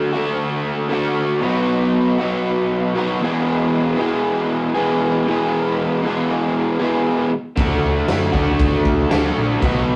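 A straight 4/4 garage rock groove carries this swaggering, raw clip from a longer piece, where a crunchy, double-tracked overdriven guitar riff sits up front alone over D, B and E chords until a round, hollow-body picked bass with tube saturation and a gritty garage kit with a fat snare, punchy kick and crash cymbal enter at 7.6 s, all in a rough rehearsal-room sound with moderate reverb.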